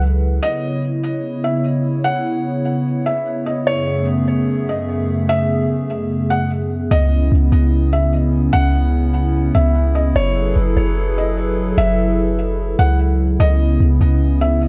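A half-time 4/4 pulse at 148 BPM carries this hazy, spacious atmospheric cloud-rap excerpt in C# minor, where a hollow, flute-like pad with chorus holds sustained chords from 0.0 s, a felt-muted upright piano with audible action noise plays a soft melody through low-pass filtering and digital delay from 0.4 s, and a deep, boomy 808-style bass returns at 6.9 s under chords moving between C#m7 and F#m11 in light small-room reverb.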